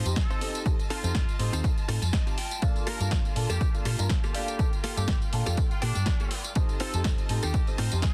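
Clear, biting studio strings sustain chords and a bright, clean electric guitar picks a compressed riff from the first moment of this nostalgic, funky filtered disco house excerpt in G minor at 122 BPM, soon joined by a dark, worn baby grand piano through a phaser, a round hollow-body bass, a punchy, tape-warm analog drum machine with hi-hat, rim click, snare and tambourine, an up-front electronic kick, and a soft-attack vintage trumpet section playing the melody with dub echo in the background, while the guitar adds fills at 1.9 and 5.6 seconds over F7 and Gm9 chords and the strings, guitar, piano, bass, drum machine and trumpets pump with sidechain compression in a dense, heavily limited modern master.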